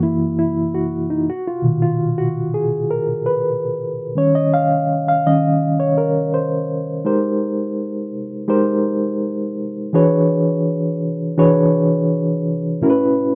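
In a straight, unhurried 4/4, this short soul passage unfolds with a warm, romantic mood, cut from a longer piece. A lone reed electric piano carries everything from 0.0 to 13.3 s, its reedy, mellow tone sitting clean and up front, colored by a medium tremolo and heard through the instrument's own built-in speakers. It spans a broad range, from deep Gb2 notes up to F5, moving through lush extended chords such as Gb7, Bmaj7 and Eb6 in the opening stretch. At 7.1 s a second section begins, shifting through Abmaj9 and E13 before settling on A69. A moderate studio reverb gives the piano a natural sense of a single shared room, as if played live.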